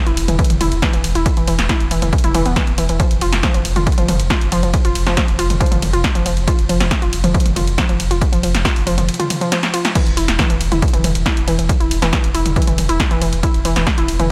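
Driving peak-time techno at 138 BPM in a straight 4/4, intense and dark, cut from a longer piece. A warbly, dusty pluck riff with a detuned, lo-fi square-and-sawtooth edge sits up front, colored by chorus, tube saturation, tape echo and sidechain pumping, over a round sine sub bass that is overdriven, low-pass filtered and also pumping. A punchy analog drum machine with crash, hi-hat, ride, snare and toms, re-recorded in a large room, is joined by a layered electronic kick that enters at 0.4 seconds, with a drum fill at 9.5 seconds and a dry, close mix overall.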